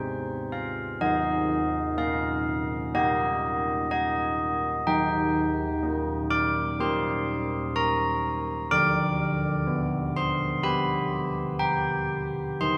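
Wintry and solemn, this short classical excerpt for church bells moves at a slow 62 BPM in 4/4 with a straight feel in Eb major, tuned to A4 = 441 Hz. A carillon plays alone throughout its 12.8 seconds, spanning D3 to D6. Its bronze tone carries a distinct minor-third overtone and the strike of an iron clapper, close-miked, full and up front. The bells sit inside a cathedral reverb that lingers for 5.2 seconds, while the harmony moves from Ab to Eb and settles on G/D at 8.7 seconds.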